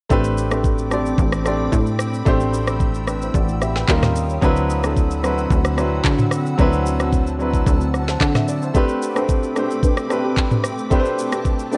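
A worn cassette sheen colours this short amapiano excerpt, with warbling pitch drift, light reverb and a digital ambience that suit its late-night, deep mood. It moves at 111 BPM in a straight 4/4, sits in A dorian and is tuned to A4 = 437 Hz, with chords running from Am11 to D#9 and D13 before returning to Am11. Up front, a smooth, electronic R&B kit with gritty 12-bit sampler colour drives the groove with a knocking kick, woody snare, rim click, handclaps, shaker and toms. Alongside it, a polished baby grand piano plays short-sustained accompaniment, and a punchy, funky analog bass with a fast, plucky filter attack holds the low end until 8.7 seconds. Behind them, a glassy FM pad holds ethereal sustained chords with ensemble chorus, built-in reverb and sidechain pumping. At 8.7 seconds, a soft, dark, detuned chord stab with chorus and tape echo enters in the background.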